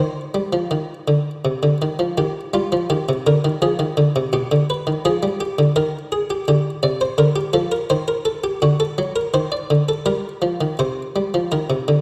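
Lively and elegant, this short passage from a longer classical work is a baroque-style two-part invention in C minor, moving at 83 BPM in a straight 3/4. A single buff-stop harpsichord in the French style carries it alone across the full 12.0 seconds, ranging from B2 up to D5. Its plucked tone is muted and lute-like, with a dry, up-front presence set within a moderate scoring-stage reverb. The opening idea returns briefly at 10.8 seconds after a longer middle stretch that begins at 2.2 seconds. Along the way the harmony travels from C minor through F minor, G major, E-flat with an added eleventh, G minor and D7 before settling on C minor seventh.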